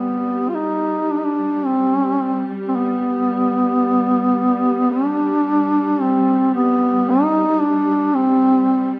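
A dark duduk and a bowed string section begin together at 0.0 seconds, opening a mournful, solemn Caucasian lament cut from a longer piece. The duduk carries the melody up front as a folk-style solo, its vibrato and scooped notes moving between B3 and F4 in G major. Beneath it, the string section sustains a smooth, even drone on G3, sitting well back in the mix with a rich, vibrato-laden ensemble tone. The pulse is a slow 55 BPM in 3/4, played with a rubato feel that lets the lament breathe freely. A moderate recital hall reverb, with a 1.7-second decay, surrounds both parts for the full 9 seconds.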